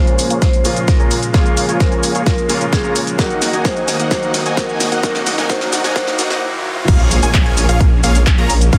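Festival progressive house with a powerful, euphoric mood, this short cut from a longer track spends most of its length in a build-up before tipping into the drop at 6.9 seconds. A ringing, metallic vibraphone carries the melody over a brilliant concert grand piano in the background, while a lush, warbling pad holds sustained chords and huge detuned supersaw chords drive the riff through a low-pass filter sweep, both with sidechain pumping. The big-room drum kit, with a huge snare, handclaps, hi-hat, shaker and crash cymbal, plays a fill across the build as a very quiet riser leads to an impact, and a punchy, overdriven electronic kick sits up front. When the drop lands, a thick, menacing detuned saw bass and a catchy plucky unison lead with vibrato join in, the lead sitting in the background with dub echo trailing the vibraphone, piano and supersaws as well. The harmony moves from Bbm7 to Ebm and back to Bbm7, all wrapped in light reverb and a dense, heavily limited modern master.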